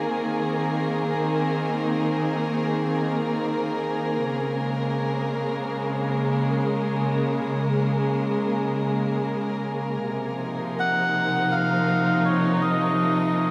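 In free time, this ambient piece in Bb minor drifts with a deep, spacious mood, its dark chamber string section holding sustained, softly bowed sul tasto chords close and up front from the opening through 13.5 seconds, moving from Abadd9/Eb to Bbm7 and then F7sus4. At 10.8 seconds a reedy, breathy melodica enters with a brief melody carried on dub echo. A wet church reverb soaks the mix in a dreamy haze, and the passage is cut from a longer piece.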